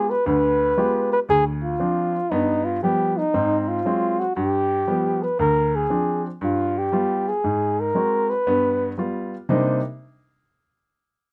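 A dark, breathy flugelhorn with vibrato opens this cool, smoky swing jazz fragment at once, playing a solo melody up front over a baby grand piano whose natural, short-sustained accompaniment sits just as close. The harmony circles between G7 and Ab7 chords before settling on Cm7 at 9.5 seconds, and both instruments stop at 9.8 seconds. The sound is dry and intimate, captured with close, detailed microphones and little reverb.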